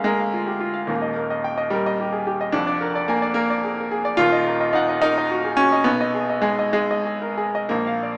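This is a classical virtuoso piano study, a stormy and passionate fragment cut from a longer piece, moving in 6/8 at roughly 61-74 BPM counted in dotted quarters with a free, rubato feel. A solo concert grand carries it alone from 0.0 to 8.2 s, ranging from Eb1 up to Ab5, and its tone is clear and worn, with a deep bass, a natural character and short sustain, set up front in the sound. The harmony moves through Bb/D, Eb, Bb7/F and Ebm before arriving at Abm/Cb at 5.9 s. The instrument sits in a moderate recital hall with about 1.5 seconds of reverb, though the overall sound is small and speaker-like. Tuning rests at A4 = 439 Hz.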